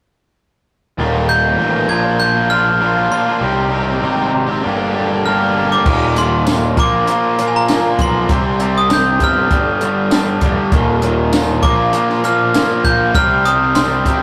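A straight 4/4 indie rock groove carries this short, wistful yet carefree excerpt, where a crunchy, up-front overdriven guitar and a raw garage guitar drive picked riffs over a fuzzy, punchy electric bass from the 1.0-second mark. A sparkling, bell-like glockenspiel struck with brass mallets rings out the melody above them from 1.3 seconds, and at 5.9 seconds a compact cocktail drum kit joins with a dark, smooth sound, a high-tuned snare, a punchy kick, hi-hat, crash cymbal and tambourine. The rough rehearsal-room recording sits in a moderate studio reverb, with the chords moving from Eb, Bb, Cm and Gm to mostly bare power chords once the drums arrive.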